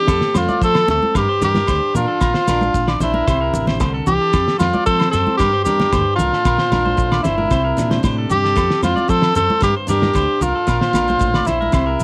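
A breathy, whispered tenor saxophone carries the melody up front in this joyful highlife guitar band excerpt at 113 BPM in F major, its soft attack and smooth top sitting over a cycling F, Gm, Bb and Cadd9 progression. Around it, a twangy, slightly broken-up electric guitar plays arpeggios, a bright dreadnought acoustic guitar picks out its accompaniment in the background, and a round, dark fingered electric bass anchors the low end. A cloth-damped drum kit with a fat snare and tight kick thuds beneath ringing agogo bells, grainy maracas and thin-skinned congas that join at 0.4 seconds, all wrapped in the light reverb and warm intimacy of a home cassette recording.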